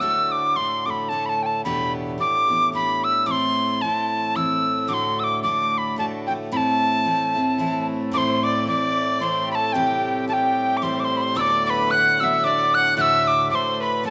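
Set in a wet echo-chamber reverb, this lively, dark and driving Celtic folk excerpt moves at 111 BPM in a swung 3/4 in A dorian. An airy, chiffy wooden whistle carries the tongued melody up front with an unsteady vibrato, over a picked jumbo steel-string guitar with fresh strings and a full body, and a breathing, reedy hand-pumped harmonium drone. At 8.2 s a single bowed fiddle with a nasal, gut-string tone joins on a second line, touched with slapback echo.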